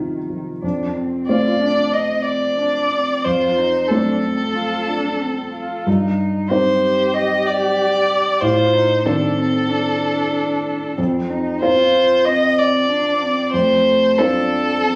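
Rubato 4/4 at 93 BPM, this fragile, reflective neoclassical piece for piano and strings, tuned to A4 = 439 Hz, sets a woody, intimate upright piano with audible action noise up front beside a dark, con sordino solo cello second line with vibrato and portamento, while a veiled, muted solo violin carries the melody from 1.3 s over chords moving from F7 and F through Cmadd9/G and Adim back to F, the trio heard playing live in one room within a moderate studio reverb.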